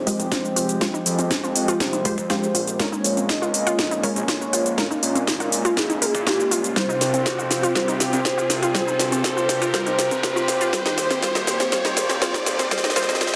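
Bittersweet and emotional, this 121 BPM progressive house build-up in F minor sets a velvety synth lead over a chorused, pumping analog pad, punchy detuned unison pluck stabs, filter-swept analog pluck arpeggios with cassette-tape coloring, and a very quiet fat analog bass, while an overdriven house drum kit with cracking snare and metallic hats plays a fill up front above a deep electronic kick in the background, a background riser enters at 2.7 s, and lush hall reverb surrounds a dense, heavily limited mix cut from a longer piece.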